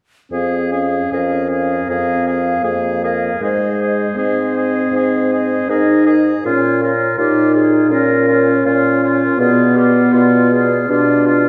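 Unfolding in a rubato 4/4 at about 80 BPM, this slow romantic movement for wind quintet in F minor carries a melancholic, elegiac mood and is cut from a longer piece. From 0.3 to 11.5 s, the five winds play together. The hollow concert flute carries the melody with vibrato and tongued notes, sitting in the background despite a close-miked presence. The oboe's warm, lightly vibrato second line sits beneath it, while the clarinet's distant, roomy accompaniment also rests in the background. A dark French horn with a vintage color adds accompaniment, and an up-front bassoon, smooth on top, anchors the bass. The harmony moves from Fm through Ab and Bbm to Bdim, all heard from further back in a recital hall with a lingering reverb tail.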